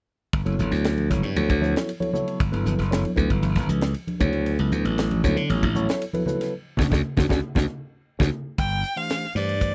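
A straight 4/4 groove at 116 BPM drives this soaring, bright electric jazz fusion excerpt in G lydian, where a glassy, growly slap bass and a tight funk drum kit with a high-tuned snare sit up front, a mellow tine electric piano with phaser moves from Gmaj9 to Dmaj9, ringing congas stay in the background, a band accent at 6.5 seconds and a drum fill at 8.3 seconds lead to a new section at 8.6 seconds where a rich, bowed violin with vibrato takes the melody over G13sus4, all in a dry, close 1970s-style studio sound.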